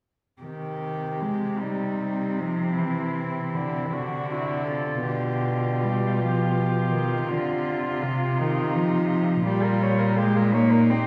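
Classical and elegiac, this solemn excerpt for four cellos unfolds in a rubato 6/8, with bass, accompaniment and a high second line sounding together from 0.4 seconds, all bowed sul tasto with soft attacks. The melody cello enters at 1.6 seconds, its airy bow and light vibrato sitting up front and intimate, while the second line, also touched with vibrato, stays in the background. Harmonies move from C minor through D7/C and G7/B before returning to C minor, all heard from further back in a recital hall whose reverb gives the pure, floating lower voices a solemn glow.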